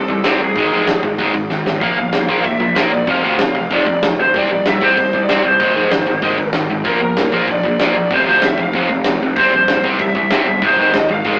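Rebellious and upbeat, this short punk rock clip charges along at 191 BPM in a straight 4/4, cut from a longer piece and running about 11.4 seconds. A lead guitar through a small cranked amp carries the melody with an overdriven, lo-fi tone, sitting on top of a bright, double-tracked distorted electric guitar riff that stays up front and compressed. Beneath them, a fuzz picked electric bass adds a growly undertone from the background. A big rock drum kit with a punchy kick, medium-tuned snare and hi-hat drives the song from 0.1 seconds, with a brief fill between 1.5 and 1.8 seconds. The chords cycle through C5, Ab5, Bb5 and F5, and the whole clip has a rough rehearsal-room character with tube saturation, an AM radio quality and a moderate small-room reverb.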